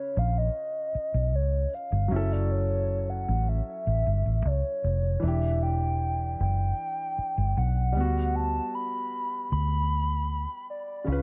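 Sensual and late-night in mood, this short excerpt from a longer contemporary R&B piece moves at an unhurried 77 BPM in a straight 4/4. A hollow, woody synth lead with a clarinet-like character carries the melody from the start, its soft, sustained tone touched with vibrato and a chorus effect that gives it a gently shimmering edge. Beneath it, a grand piano supplies intimate accompaniment in the middle register, with the natural sound of its action audible in the small room ambience. A vintage muted electric bass enters at 0.2 seconds, sitting up front in the mix with a dark, round, punchy tone that anchors the low end. The harmony drifts from C#7 through F#m7 and Em7 before settling on Gmaj7/D, lending the passage a smoky, searching quality.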